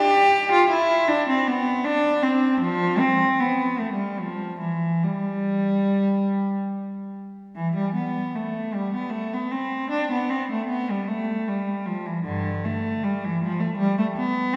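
Radiant and dance-like, this fragment of a baroque-style suite movement for unaccompanied cello unfolds in a rubato 3/4, with a single bowed player spanning G2 to G4 in a biting, reedy gut-string tone with light vibrato and period style, tuned to A4 = 444 Hz, stating its opening phrase and then repeating it at 7.6 seconds within the wet reverb of a concert hall.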